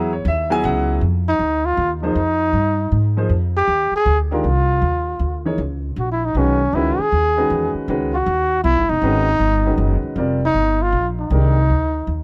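Cool and spiritual, this modal jazz passage moves in a swung three-four, and it is cut from a longer piece. An upright piano with a warm, open tone plays accompaniment from the start and drops out at 11.5 seconds. A pizzicato upright bass on gut strings sounds woody and thumpy throughout. A breathy trumpet enters at 1.3 seconds as the soloist, its dark, smooth-topped tone colored by vibrato and scooped notes in a jazz style. The harmony rests on minor ninth and suspended seventh chords. All three instruments sit up front, captured by close, detailed microphones in a nearly dry room.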